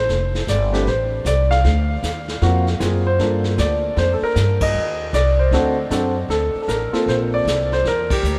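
A natural, up-front grand piano carries the melody in this moody, late-night jazz piano trio fragment in G minor at 155 BPM with a swung 4/4 feel, over woody pizzicato upright bass and a distant vintage kit played with brushes, its dark cymbals and rolled-off top set back in a vast, echoing cathedral space, as chords such as D7alt, Gm9 and Bbmaj9/A pass by and the band hits accents together at 4.6 and 8.0 seconds.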